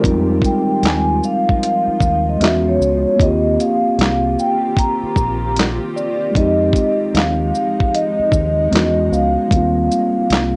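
A groove in four with sixteenth-note swing drives this nostalgic, melancholic lo-fi hip hop excerpt, carried by a gritty, compressed sampler-style drum kit sitting up front with a thumpy kick, a medium-tuned snare, handclaps, hi-hat and shaker, all colored by cassette tape. Beneath it, a dark, round fingered electric bass keeps to the low register with a punchy, direct-and-amped tone. A mellow tine electric piano supplies clean accompaniment through tape saturation and a low-pass filter, cycling through Fm7, E69 and Eb69. From 0.5 seconds a vibraphone with soft mallets carries the melody up front, metallic and ringing with a medium motor vibrato, its high line softened by filtering and tape. Underneath it all, a granular cloud pad holds blurred, detuned, evolving chords with a slow attack and long release, washed in its own reverb, while the whole mix has a small-room ambience and the muffled, homespun character of a cassette recording.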